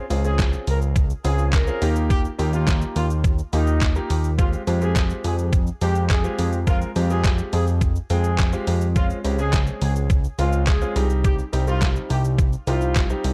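A clear, polished baby grand piano opens this energetic, confident dance-pop clip with sidechain-pumped accompaniment, joined almost at once by a fat, nasal, saturated analog bass with the same pumping, a thumpy, detuned 8-bit drum machine of kick, snare, hi-hat, handclaps and shaker sitting up front, and a smooth-topped horn section carrying the melody with light vibrato and dub echo, in a dark, dry, warm production whose harmony moves through Dbmaj7, Ebadd9, Fmadd9 and Dbmaj7 before ending on Cm.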